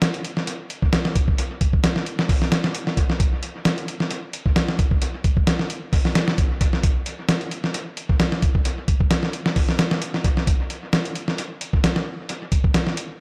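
Breakbeat with a raw, energetic drive, this short cut from a longer piece features a dusty, soul-flavored sampler-style drum kit of hi-hat, kick and snare, playing throughout with a light sixteenth-note swing in 4/4. The kit sits up front and sounds gritty and compressed, with a thumpy kick, a medium-tuned snare and a tape-warm character, re-recorded in a large room. Dub echo trails the drums, and light reverb gives the echo-heavy mix its sense of space.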